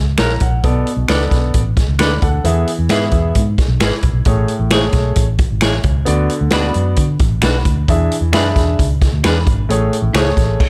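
Uplifting and joyful, this excerpt of uptempo 1960s-style soul opens with a short grand piano fill before a clear, up-front concert grand carries the chords over a dark, round, foam-muted electric bass, a vintage drum kit with a punchy kick and a rolled-off top, finger snaps and clean picked stabs from a semi-hollow electric guitar bathed in spring reverb, all in a dry, close sound.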